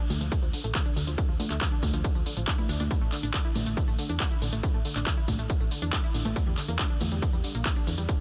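A straight 4/4 pulse at 139 BPM drives this short, emotional uplifting trance cut in D minor: a heavy, overdriven electronic kick sits up front with a layered techno kit of congas, handclaps, hi-hat and tambourine, beneath a round, dark FM bass and a lush, detuned sawtooth unison pluck playing arpeggios, both pumping from sidechain compression and the pluck trailed by dub echo, as the chords move from Dm to Asus4 at 2.9 seconds and Em7b5 at 6.4 seconds in a dry, dense, heavily limited master.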